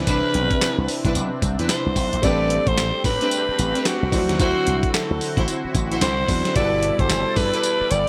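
A growling, raspy alto saxophone leads up front from the first moment, its jazz-style lines full of scooped notes and vibrato, over a vintage grand piano, a sweeping, detuned pad with chorus, and a bright slap bass pushed through an envelope filter. This punchy, confident new jack swing passage rides a swung sixteenth feel, with a dusty, compressed sampler-style kit of thumpy kick, snare, handclaps, hi-hat and tambourine sitting up front, while a lush, woody string section adds bowed stabs in the background. Light reverb frames the piece as it moves through Cmaj9, Am11, D9 and G69.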